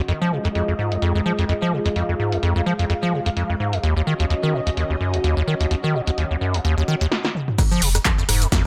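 A swung sixteenth-note groove in 4/4 drives this raw, trippy acid house excerpt, where an up-front, overdriven analog drum machine with a punchy snare and filtered hats, claps, rim clicks, shaker, toms and crash backs a squelchy, resonant square-wave acid bass riff beneath lush, vintage string-machine chords under a filter sweep and sidechain pumping, until a drum fill and stop at 7.1 s give way to a drop at 7.6 s, where an overdriven electronic kick arrives and a deep, round sine sub bass soon joins.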